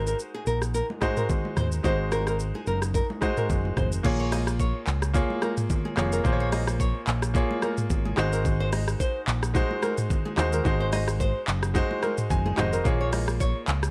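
A sultry, mellow afrobeats fragment opens with a clear, polished grand piano, a fingerpicked nylon-string guitar riff treated with tape echo, and a dark, round, punchy electric bass up front, soon joined by an electronic afro-pop kit with knocking kick, metallic hats, handclaps, shaker, rim clicks, toms and crash, while ringing, high-tuned congas sit in the background from 0.9 seconds, a second section arrives at 4.0 seconds, and the piano adds a fill at 12.0 seconds, all within a dry, gritty sound.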